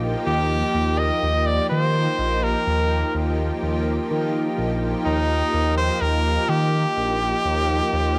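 Progressive instrumental band music in 5/4 at 125 BPM, driving and bright, this Eb major excerpt runs 8.2 seconds and holds to the Eb chord throughout. A brilliant, punchy trumpet carries the melody with vibrato and forceful pop-style delivery, over a lush, detuned unison pad with slow attack, chorus and cassette-tape colour, and a smooth, saturated synth bass with a moving notch. The home cassette recording sits in a small room with moderate spring reverb, giving the parts a close, up-front presence.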